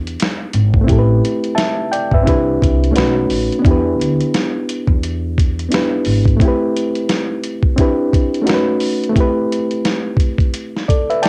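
A reedy, worn electric piano sits up front in this melancholic, reflective lo-fi hip hop excerpt, its slightly out-of-tune tone lightly overdriven and heard through built-in speakers as it carries the accompaniment across the full 11.3 seconds. Beneath it, a pizzicato upright bass with a woody, dark voice and transformer saturation holds the low end until it stops at 6.4 seconds. A sampler-style drum kit enters at 0.1 seconds, compressed and muffled, with a thumpy kick, a medium-tuned snare and hi-hat, re-recorded in a large room and given a cassette tape colour. At 87 BPM in 4/4 with a lazy 16th-note swing, the piece in A minor moves through Em7, Am7, Cmaj7 and B7 changes that lend it a wistful, circling quality. Light reverb and the grain of a home cassette recording wrap the parts in a hazy, intimate atmosphere.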